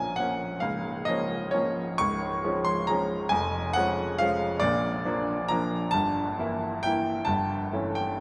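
A clear baby grand piano plays alone, present and up front, in a romantic classical dance in triple time at 135 BPM, its dotted rhythms pushed and pulled by rubato and uneven beats. The mood is nostalgic and capricious, with harmony moving from Bbm through Db and Bb to Edim/G and A7/G, the piano ranging from Db1 to Db6. Wet cathedral reverb with a 7.0-second decay places it in a vast, echoing space across this 8.2-second fragment of a longer piece.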